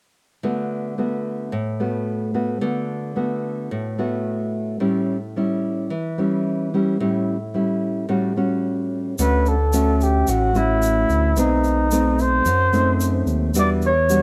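A light reverb gives this short bossa nova excerpt a gentle sense of space, and its mood is breezy and sophisticated at 110 BPM in a straight 4/4, in D major with tuning set to A4 = 435 Hz. A thumb-plucked nylon-string guitar opens alone at 0.4 seconds, sitting up front with a warm, classical character as it moves through D6, A7 and A6. At 9.2 seconds the music shifts into a new section, and three parts join: a mellow flugelhorn carrying the melody, a synth bass and a tube shaker. The flugelhorn plays jazz-style solo lines with vibrato, soft attacks and scooped notes, heard up front yet distant and roomy. Beneath it, the dark, smooth synth bass blends sawtooth and square wave tones with a fast attack, sustained notes and gliding portamento, while the grainy, bright shaker has a small-room acoustic feel. The harmony in this later stretch turns to Dmaj7, B7b9 and Em9 before the piece is cut off at 14.2 seconds.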